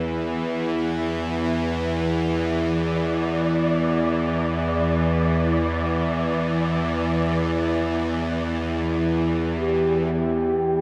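A nasal, string-like bowed drone with vibrato sits up front from the start, spanning E2 to E3 over an E7 harmony in free time, and at 2.3 seconds a breathy, wind-like tuned noise texture settles in the background on a high D5 with shimmer reverb, before a round, horn-like synth lead with chorus and vibrato enters on G4 at 9.6 seconds in this vast, ominous dark ambient drone, cut from a longer piece and bathed in a cavernous cathedral reverb.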